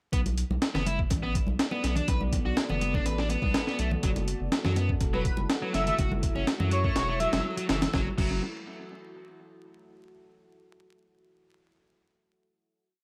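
Breakbeat built as a short, energetic, gritty piece that runs as one drop before settling on a final chord at 7.9 seconds. An up-front, sampler-style breakbeat kit drives it, with a thumpy kick, high-tuned snare, hi-hat and crash cymbal in a looped, edited break that sounds pitched up, compressed and tape-warm, trailed by analog delay. Beneath it a saturated sine sub bass plays a dotted-rhythm line with fast attack, while an overdriven electric guitar repeats a picked 32-step riff roughened by vintage 12-bit sampler grit and delay. Damped, thick-skinned congas sit in the background with a loop of mute, high and low strokes, and a deep, moody sawtooth pad with a sub octave fades in from 1.2 seconds, pumping under sidechain and blurred by chorus and reverb across Bm7 and F#m7. At 5.1 seconds an airy, dreamy lead enters with short answering phrases, its bright, vibrato-laced tone coloured by chorus and a small-speaker quality, all within an echo-heavy mix dusted with vinyl crackle and digital ambience.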